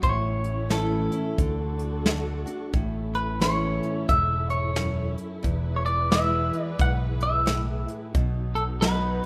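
Honky-tonk classic country in A major at 89 BPM with a lilting swing, heartfelt and sunny, where a bright, twangy, slightly broken-up electric guitar carries the melody up front over a full-bodied dreadnought acoustic guitar, a dark, round fingered electric bass, soft brushed drums with a punchy kick, and a lush bowed string section holding sustained chords with vibrato, set in light reverb as the harmony moves from A through D and E to B across this 9.3-second excerpt.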